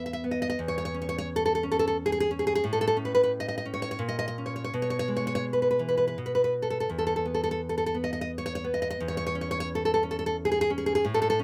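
A solo nylon-string guitar carries this short romantic passage, its warm, fingerpicked classical tone sitting up front and captured by close, detailed microphones. Cut from a longer piece, the music moves in 3/4 at roughly 82-90 BPM with a rubato feel, giving it a gently unhurried, sunny mood. The guitar spans from E2 up to E5, opening on an E5 chord before moving through C#m/E, A, and a colourful A#madd11 that resolves toward E/B around 4.7 seconds. After a brief pause in the harmony, the E5 and C#m/E shapes return near 6.9 seconds, rounding out the 11.4-second passage. Light reverb adds a touch of space around the intimate, detailed sound.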